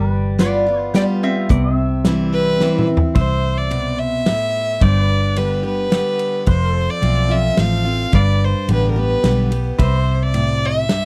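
In a straight 3/4 at 108 BPM, this easygoing, down-home honky-tonk and classic country piece in C major opens with a nasal, metallic lap resonator guitar taking a slide lead at 0.4 seconds. A full-bodied, picked dreadnought acoustic guitar and a dark, round, foam-muted electric bass sit underneath, while a clean pedal steel guitar adds sustained chords with volume swells in the background. An up-front acoustic drum kit with a punchy kick plays a fill at 2.6 seconds, just after a clear, smooth bowed fiddle with light vibrato enters at 2.3 seconds to carry the melody over G, F and C chords, all in a dry, close 1970s-style studio sound.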